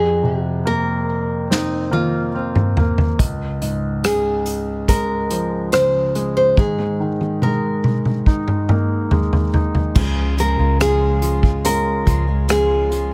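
A fingerpicked nylon-string guitar carries the melody up front, its full-bodied tone trailed by tape echo, over a clear concert grand piano with audible action noise and long sustain in this emotional, melancholic pop ballad cut from a longer piece. An unplugged drum kit played with bundle sticks enters at 1.5 seconds with a tight kick and medium-tuned snare, rolling through fills over chords moving from Fsus4 to Db and Absus2. Near the close, a background steel-string acoustic guitar adds fingerpicked arpeggios at 9.9 seconds and a dark, foam-muted, round electric bass joins at 10.0 seconds, all set in light reverb and small room ambience.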